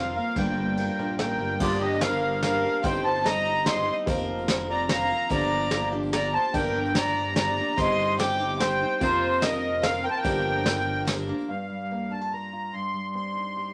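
A reedy, sweet accordion melody with light tremolo tuning sits up front from the start of this bittersweet, yearning indie folk waltz excerpt, over a fingerpicked steel-string acoustic guitar, a bright, picked steel-string guitar in the background and a glossy, retro chorused synth bass, with soft brush drums arriving almost at once. A nasal, smooth bowed fiddle adds a second line with light vibrato, and by 1.6 seconds a dark, woody upright piano and a jingly, very quiet tambourine fill out the building arrangement as it cycles through Gm7, Cm/G and Fsus4, the piano adding a short fill just before the full band drops away. From 11.5 seconds the accordion carries on with only the fingerpicked guitar, all set in a moderate studio ambience with tube saturation.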